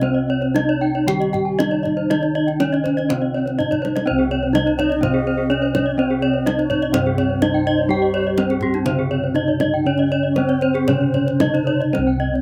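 This shimmering, brilliant Balinese gamelan passage in C pelog opens at once with bronze metallophones, bossed gongs and kendang at 112-125 BPM in a straight 4/4. An up-front wooden-mallet metallophone carries the melody with the beating shimmer of paired tuning, while two bright horn-mallet metallophones spin arpeggios above it. A background metallophone holds the low accompaniment, round padded-beater gongs supply the bass, and a deep, compressed, saturated kendang plays a fill from 3.6 to 4.1 s before the music moves into a new section. At 4.8 s a pure, soft-attacked bamboo bansuri with vibrato slips in behind as a second line, and it, the melody and the arpeggios carry a slapback echo in this dry, close outdoor recording cut from a longer piece.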